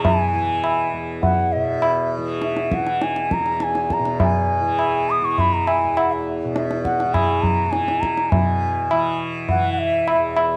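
Set in a straight seven-beat cycle at 102 BPM, this excerpt of Hindustani classical music has a devotional, radiant mood. A low-tuned, ringing tabla keeps the cycle, its acoustic tone given a compressed, saturated weight that sits level with the melody. Beneath it, a softly plucked tanpura holds a bright, buzzing, shimmering drone in the low register, a little further back in the mix. The bamboo bansuri carries the melody in an airy voice with vibrato and tongued notes, spanning E5 to a D#6 pitched about 20 cents flat before falling silent at 10.4 s. The music moves into a new section at 8.3 s, and moderate spring reverb with studio ambience lends the ensemble a gentle sense of space.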